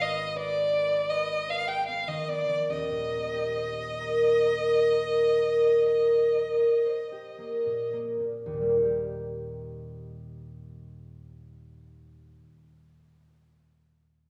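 This classical, impressionist excerpt for violin and harp has a pastoral, luminous mood. It moves in a slow, rubato 12/8 at around 36-55 BPM in Eb major and slows down through its first 8.5 seconds. A rich, smooth bowed violin with vibrato sings the melody up front until 7.9 s, while a mellow, ringing concert harp plays fingerpicked accompaniment until 12.5 s over chords drifting from Abm6 to Eb6 and settling on Eb. It is all heard from further back in a reverberant recital hall.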